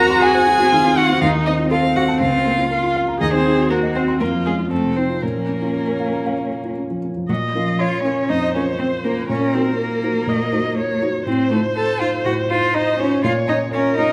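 This quick classical-period movement for piano quartet, cut from a longer piece, moves with a spirited yet graceful character and a supple rubato feel. A single violin carries the melody with a smooth top, expressive vibrato and portamento, while a cello sings a second line beneath it with a soft attack and a warm tone. A rich, distant-sounding viola fills in the accompaniment with its own vibrato and sliding portamento. Up front in the mix, a dark, mellow baby grand piano accompanies with short sustain, an intimate, natural tone and audible action noise. All four players sound together throughout, stating the same theme twice, with the second statement beginning at 7.3 seconds. A moderate recital hall reverb surrounds the ensemble.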